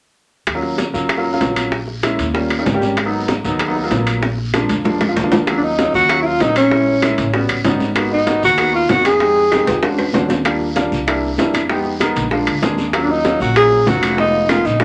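Afro-Cuban jazz, fiery and driving at 193 BPM in Eb minor, cut from a longer piece, with a clear upright piano comping up front and a thumpy, gut-strung pizzicato upright bass beneath a percussion bed of ringing metal-shell timbales, tight high-tuned bongos, thin-skinned congas, woody claves and a raspy vintage guiro. A breathy alto saxophone takes the melody at 5.6 seconds, close-miked and intimate with vibrato and a whispered subtone, then returns at 13.0 seconds over chords that open on Ebm9 and move through dominant thirteenths like A13 and E13. Drum fills arrive around 4.2, 9.5 and 14.5 seconds, the piano's audible action noise and long sustain give it a present, polished feel, and a moderate small room ambience surrounds the ensemble.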